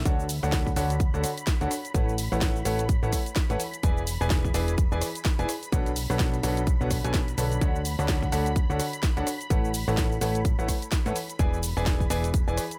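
Piano house with a feel-good, uplifting mood, this short cut from a longer piece rides a swung sixteenth-note groove in four. A clear, intimate grand piano sits up front playing the riff, its audible action noise and long sustain giving it a polished presence, with dub echo trailing its phrases and sidechain pumping tying it to the beat. Beneath it, a plucky analog bass with a funky, wave-folded edge and fast, decaying filter attacks moves through the low register, while a punchy electronic kick anchors everything in the foreground. A house drum kit adds hi-hat, rim click, shaker and a cracking snare, both drum parts layered and re-recorded in a small room. In the background, a silky, string-like analog pad holds sustained chords with slow attack, ensemble chorus, vibrato and a moving notch, pumping along as the harmony cycles through Dmaj7, A69, E7 and Bm9 in a dry, close-sounding mix.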